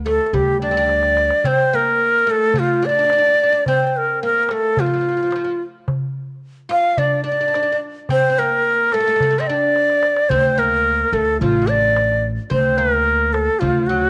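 Set in light reverb and studio ambience, this stately, festive excerpt of an Arabic maqam ensemble in D maqam saba moves at 108 BPM in a straight 4/4, with a breathy, bright ney carrying the melody up front with vibrato and a soft attack, a mellow, plectrum-plucked fretless oud adding a deep second line, a close, dry clay-shell darbuka played with soft hands that drops a fill at 0.9 seconds, and a thumpy pizzicato upright bass that sounds only briefly at the opening before returning at 10.3 seconds.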